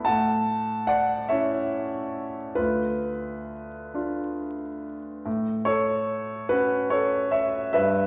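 Classical impressionist solo piano, luminous and hazy, moving slowly in 6/8 with free, rubato timing. A clear concert grand carries everything on its own from 0.0 to 8.1 seconds, with deep bass, natural tone and long sustain placed up front, drifting from A6 to Dm6 and back to A6 at 5.3 seconds as the opening phrase returns. The hall reverb is wet and the listener seems seated further back in the room, with vinyl crackle adding an antique haze to this short fragment of a longer piece.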